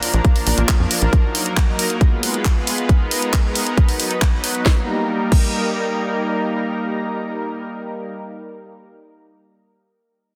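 A dense, heavily limited modern mix sits in a lush hall reverb, opening this bittersweet, euphoric slice of uplifting trance in a straight four-four pulse. A thick, warbling, detuned sawtooth pad holds chorused chords up front with sidechain pumping, while a punchy electronic kick and a house kit of crash, handclaps, hi-hat and cracking snare drive the groove until 5.5 seconds. A tight, nasal sequencer bass with tube saturation and a fast-attack filter pluck appears only from 0.1 to 1.1 seconds, and the bright pad carries on alone to 8.1 seconds.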